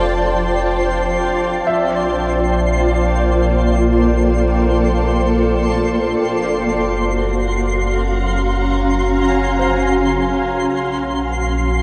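Weightless and luminous, this ambient excerpt in Bb lydian drifts at 53 BPM in a vast cathedral reverb, its chords moving from Bbmaj13 to Gbmaj9 and settling on Bbadd9 at 10.7 s. Up front, a blurred, detuned granular cloud pad holds evolving sustained chords over a deep, round sine sub bass, while a twinkling FM granular texture sparkles high above with an octave-up shimmer. From 1.7 s, a soft, felt-muted upright piano plays intimate arpeggios in the background through tape echo.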